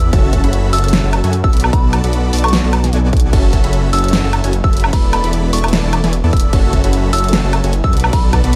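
Dark, warm production bathes this short future bass cut from a longer piece in a digital ambience, giving it an emotional, dreamy mood. At 150 BPM in 4/4 with a half-time feel and a light 16th-note swing, it moves through F# minor chords, F#m7, Bm7 and E7sus4. A huge, compressed supersaw carries the riff with bright, detuned unison sawtooth layers, a sub octave and vibrato, pumping against the sidechain. Underneath, a thick, lush detuned saw bass sits up front with chorus and the same pumping, while a punchy layered electronic kick enters at 0.1 s and also sits up front. A big-room dance kit adds a huge snare, crash cymbal, hi-hat and woodblock. Tucked in the background, a soft, pure FM bell plays a mellow high melody, its decaying notes shaped by chorus, sidechain pumping and dub echo.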